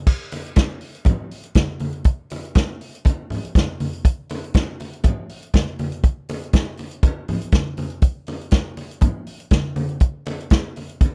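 Disco groove, driving and sultry in a straight 4/4, where a vintage drum kit sits up front with a tight kick, medium-tuned snare, hi-hat, dark crash cymbal and a rolled-off top in a small, natural room, joined from 0.3 seconds by low-tuned, thick-skinned congas set distant in a larger space, all captured as a dry, close 1970s-style studio recording cut from a longer piece.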